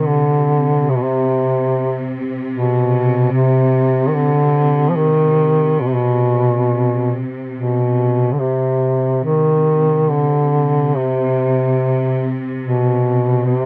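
From the first moment, a mellow duduk sings a mournful, solemn melody over a bowed string section holding a low drone on a single note, both sounding from 0.0 to 13.7 seconds. This Caucasian folk lament moves in a loose, rubato three, so the line breathes freely rather than keeping strict time. The duduk sits up front in the mix, its soft attack and light vibrato giving each phrase a gentle, sighing quality in the instrument's low register. Beneath it, the strings are rich and lush, their vibrato adding depth while staying well below the solo voice. The sound is that of a dry, close 1970s-style studio recording touched by light reverb, and this short passage is cut from a longer piece.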